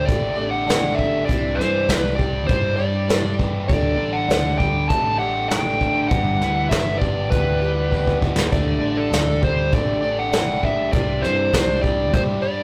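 A dark, smooth overdriven lead guitar sits up front carrying the melody in this jangly, hopeful folk rock and heartland rock excerpt at 100 BPM, cut from a longer piece. Beneath it, a shimmering, octave-doubled plugged-in twelve-string acoustic guitar with audible finger squeak is picked in the background, a biting, double-tracked overdriven guitar plays a riff, and a round fingered electric bass holds the low end over chords moving through Dsus4, Cadd9 and G6. A soft brush drum kit with a punchy kick plays up front, adding a fill at 7.9 seconds, all within a rough rehearsal-room sound with tube saturation and moderate stone-room reverb.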